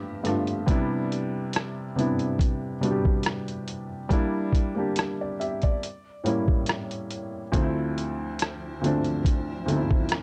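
Lo-fi hip hop at a relaxed 70 BPM with a gentle 16th-note swing in C major, this dreamy, nostalgic fragment from a longer piece sets a soft, muted felt-damped upright piano with short sustain up front over a compressed, pitched-down sampler-style drum kit of thumpy kick, hi-hat and rim click, while a cloudy, detuned granular pad with its own reverb drifts in the background at the start and returns at 8.1 seconds, all moving through Cmaj7, Em7b5, A7b9 and Dm9 in a dry, gritty recording touched with light reverb.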